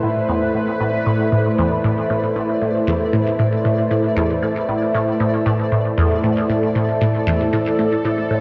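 Ambient, sequencer-driven space music with a hypnotic, expansive mood, heard in a short cut from a longer piece that rests on a single A minor chord throughout. A juicy, squelchy blip pluck sits up front in the low register, repeating a riff with a fast attack and short decay, its resonant filter and moving notch colored by phaser, lush chorus and delay. Above it, an evolving pad of detuned sawtooth and sine layers holds sustained chords, its resonant filter swelling slowly, bright and prominent, with chorus and shimmer reverb. From 0.5 seconds a pulsing, tempo-synced gated texture of unison detuned triangles enters in the background on a single high note, with a long release and its own chorus and shimmer reverb, as a synth texture fades in across the whole passage. A wet plate reverb with a long tail and the warbling pitch drift of worn cassette tape give the recording a hazy, aged glow.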